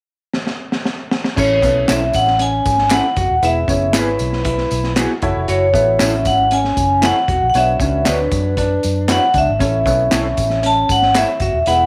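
A small room's ambience and light reverb frame this joyful, uptempo 1960s-style soul excerpt in A major, moving at 116 BPM in a straight 4/4. A crunchy breakbeat drum kit opens with a fill at 0.3 seconds, its saturated, gritty sound built on dark cymbals, a high-tuned snare and a tight kick with a rolled-off top. At 1.4 seconds most of the band arrives over a progression of A, E, F#m7 and Bmadd9 before returning to A. A bright, airy vibraphone with medium hard mallets carries the melody up front, ringing and metallic with a slow motor vibrato. Beneath it, a woody, slightly detuned upright piano with audible action noise provides accompaniment, while a round, punchy foam-muted electric bass anchors the low end. A picked electric guitar through a small old amp plays a slightly broken-up riff in the background, a second compressed, fingered guitar adds stabs from 1.9 seconds, and tambourine and group handclaps bring an acoustic, small-room sparkle to the groove.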